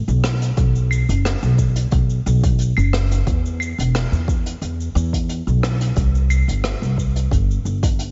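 An upright bass and a jazz brush drum kit open this wistful, smooth sunset chillout excerpt together in a straight 4/4, the bass plucked pizzicato with a woody, dark tone on steel strings and sitting up front in the low register. The brush kit is acoustic and recorded in a studio room, its cabasa, claves, hi-hat and rim click kept soft beneath the bass. At 0.6 seconds an electronic kick drum joins, a deep, layered and overdriven produced sound re-recorded in a small room, adding weight under the acoustic parts. The sound is dry, with little reverb and a top end that stops short of the highest frequencies, giving the whole a rounded, intimate feel. The piece plays as a single unbroken section, cut from a longer work.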